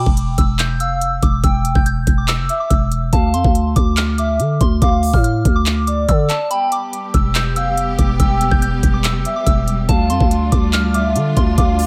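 Trap hip hop at 142 BPM in a half-time feel, this menacing, melancholic excerpt sits in E phrygian and moves between Em and Dm. A soft, pure FM synth bell carries the melody high above, its decaying notes shaded by chorus, phaser, a low-pass filter and tape echo, while a hollow, woody clarinet-like synth lead holds a mellow, sustained second line with vibrato, chorus and tape echo. Underneath, a growling, buzzy 808-style bass with a fast attack sits up front, and the overdriven trap kit enters at 0.1 s with a knocking kick, crisp hi-hats and handclaps, re-recorded in a small room for a produced edge. After a brief break at 6.5 s, a clear studio string section joins with lush, bowed sustained chords and vibrato, thickening the harmony through to the end at 11.9 s. Light reverb and digital ambience give the mix a subtle sense of space.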